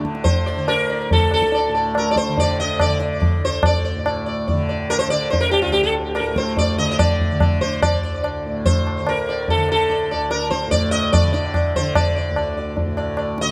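Close, detailed microphones and a light reverb give this meditative Hindustani classical recording an intimate, present sound. The sitar sits up front, bright and round, its plectrum-plucked melody between F4 and Eb5 ringing with sympathetic strings and carried by a tape echo. Beneath it, the tanpura holds a softly plucked drone from D2 to D3, warm, buzzing and shimmering, and set lower in the mix than the other two parts. The high-tuned tabla, close and dry with a short ring, marks an introspective cycle of five beats at the same level as the sitar. All three play together through the full 13.5 seconds as the pulse gradually speeds up across this passage from a longer piece.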